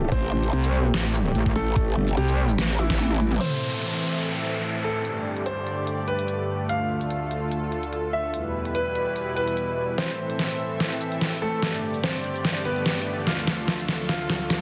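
A dense, heavily limited mix with light reverb carries this chaotic, aggressive heavy wobble dubstep, which opens on a half-time drop where a saturated, detuned growl bass and a metallic FM wobble bass snarl over a knocking electronic kick and a layered dubstep kit of deep snare, crisp hats, shaker, toms and crash. Both basses and the kick are gone by 3.4 seconds, leaving a lush supersaw pad pumping under a filter sweep while a clear grand piano carries the melody through dub echo and a downlifter and riser appear. From 10.0 seconds a build-up takes hold, the piano now filtered and the drums in a fill until the cut ends.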